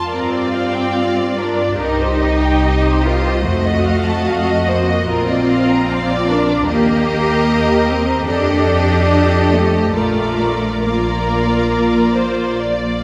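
A wet church reverb surrounds this serene, tender slow movement for string orchestra, cut from a longer piece, moving at 73 BPM in 4/4 with an uneven, rubato pulse in Bb major. A bright, intense violin section carries the melody with vibrato, while a warm, smooth second violin line and a clear viola accompaniment with light vibrato fill the middle, all set over a rich cello section and a lush double bass sitting up front. The harmony passes from Gm7 through Cm7 and F7b9 to Bb, then Eb and F13 before returning to Bb at 10.0 seconds.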